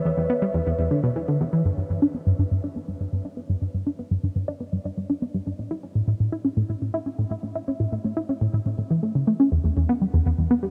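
A smooth, gliding sawtooth lead with vibrato and ensemble chorus sounds a brief B4 note that ends by 0.9 seconds, as a tight, detuned sequenced synth riff enters at 0.1 seconds under a filter sweep. This hypnotic, mysterious ambient fragment moves at 122 BPM in a straight 4/4. The up-front plucked synth, spanning E2 to E4 with phaser, chorus and delay, drives on through 10.7 seconds, its harmony passing from E5 through a chordless stretch to A5 and Em, all bathed in a huge reverb and cassette tape grain.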